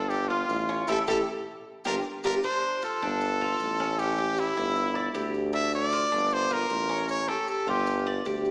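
A brilliant, punchy trumpet carries the vibrato-laden melody up front in this danceable, sultry Cuban son and guajira fragment at 155 BPM, over metallic double-string arpeggios from a picked tres, a warm tuba bass and very quiet, grainy maracas, with a band accent from 0.9 to 2.4 seconds, chords moving among G5, Gm7, Dm and A7, and a wet recital-hall reverb heard through a small-speaker sound.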